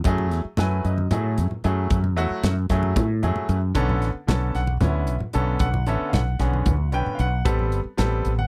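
Electric jazz fusion in 7/8 at 227 BPM counted in eighths, with a slick, funky mood in this short cut from a longer piece, moving through F#m9, Bm9 and Am9 chords. A dark, round fretless bass with analog chorus sits up front alongside a brilliant grand piano whose action noise is audible, while a polished studio drum kit with a tight kick and medium-tuned snare drives the groove and low-tuned, thick-skinned congas sit in the background. The dry, close recording has a 1970s studio character with little reverb.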